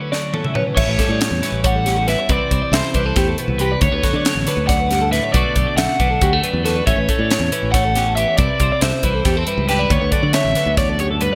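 A crisp fusion drum kit sits up front, its high-tuned snare and punchy kick playing a drum fill from 0.1 to 0.8 seconds near the start of this math rock and midwest emo excerpt before the section settles in. The mood is intricate and wistful, moving at 276 BPM counted in eighths across a straight 7/8 metre in D major, with the harmony passing through chords such as Dmaj9, A7, Cmaj7, D6 and Bm7. Two twelve-string electric guitars play from the start: one, twangy and compressed with spring reverb, carries the accompaniment in the lower range, while the other plays arpeggios higher up through a lush chorus. An overdriven semi-hollow guitar with a hollow-body tone and its own lush chorus takes the melody from 0.6 seconds. A modern, bright fingered electric bass, recorded direct, joins at 0.8 seconds. The drums carry gated reverb in an airy, polished studio room, all framed by a bright 1980s-style digital production.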